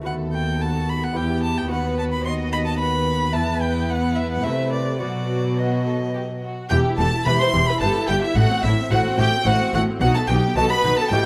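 A solo violin carries the melody above the ensemble, its rich, expressive tone marked by vibrato and portamento, though it sits at a slight distance. This dramatic, driving passage is cut from a longer baroque-style concerto movement in triple metre. The soloist is joined by a focused chamber violin section on the melody in the background and a lush, woody second violin line that enters at 0.6 seconds. A smooth, even viola section fills the middle, while a bright, delicate lute plays fingerpicked accompaniment on gut double strings, some of them octave-doubled. Up front, a warm cello section anchors the bass with its own portamento, and a soft-attacked double bass section joins it at 6.7 seconds as a new section begins. The harmony moves through minor and diminished chords before arriving on B, all heard in a moderate recital hall reverb through close, detailed microphones.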